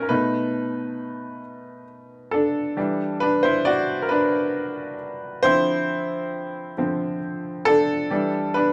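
A clear, natural baby grand piano plays alone and up front with a short sustain, moving from B7 through Em9 and Dm9 to Em7 in E phrygian across this sultry, late-night R&B fragment in a slow 6/8 at 45 BPM, framed by a wet studio ambience.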